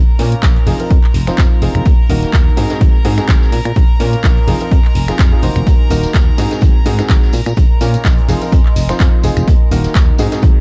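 A bittersweet, energetic piano house excerpt opens on a rich chamber violin section holding reedy, gut-string chords over a round, punchy FM bass, both pumping against the up-front, tape-warm electronic kick. A clear, woody, slightly detuned upright piano riff runs through a low-pass filter and digital delay, while layered house snaps, claps and hats mix with a background vintage kit of rolled-off hats and a medium-tuned snare, and a deep, moody sawtooth pad sits very quietly above from 1.1 seconds. A tambourine joins in the background at 5.7 seconds as the Bbm7–Fm7–Ebm–Ab7 progression cycles through a dark, small-room production.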